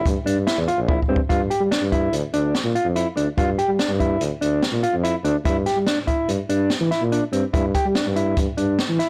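Intricate and tense, this progressive instrumental band piece runs at 144 BPM in an uneven 5/4 with a straight feel, centred in G dorian and tuned slightly sharp to A4 = 443 Hz. A mellow, dark, clean electric guitar plays fingered arpeggios in a narrow middle register, bathed in plate reverb and set up front. Beneath it, a tuba carries the bass line from Bb1 up to G3, its smooth top and light vibrato giving it a pop-styled, solo presence. An open jazz kit of hi-hat, boomy kick and high-tuned snare sounds natural and acoustic in a studio room, and a drum fill at 0.9 to 1.3 s ushers in the longer second passage. The harmony moves from a rootless C7 over G to a G7 lacking its third at 1.3 s, then to a rootless C over G at 5.5 s. The whole recording, caught in a moderate booth ambience, is blown out and overdriven, lending a gritty edge to this short slice of a longer piece.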